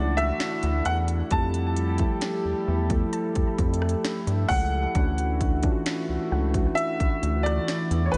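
Contemporary R&B with a tender, smooth mood, moving at a slow 66 BPM in straight 4/4 in D major, this short excerpt is cut from a longer piece. A clear, slightly worn grand piano carries the melody up front with a touch of delay, while muted, felt-like synth keys add intimate, dark accompaniment through chorus. A shimmering, retro pulse-width pad holds sustained chords with a sidechain pumping effect, and a rubbery, hollow square bass sits up front with a bouncy, resonant filter pluck. An electronic trap kit enters at 0.2 seconds with a hard-clipped kick, sharp snare, crisp hats and rim clicks, roughened by vintage 12-bit sampler grit. A very quiet, soft, round pluck joins at 3.1 seconds as a gentle high texture, and the harmony shifts from Dmaj9 to Fmaj9 and back to Dmaj9 within a dreamy mix soaked in church reverb.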